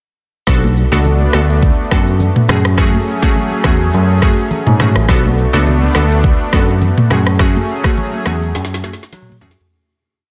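The recording has light reverb and a dense, heavily limited modern master, with the bass and drums sitting up front. This short afrobeats piece in F# minor moves at 104 BPM with a hypnotic, sultry feel and a lightly swung sixteenth-note lilt, cycling between Bm7 and F#madd9 as a single chorus. A bright, bell-like tine electric piano carries a bouncy syncopated bass line through a phaser, while an electronic afro-pop kit lays down a soft, deep kick, syncopated rim clicks, shaker, toms and a woody, softly clipped snare. Above them a glassy, crystalline wavetable pluck with chorus and a filter sweep plays syncopated chords, and a smooth, warbling vintage analog pad holds sustained chords underneath. Very quiet, close and dry high-tuned congas interlock in the background, and the piece fades out from 7.4 seconds as a drum fill arrives at 8.5 seconds.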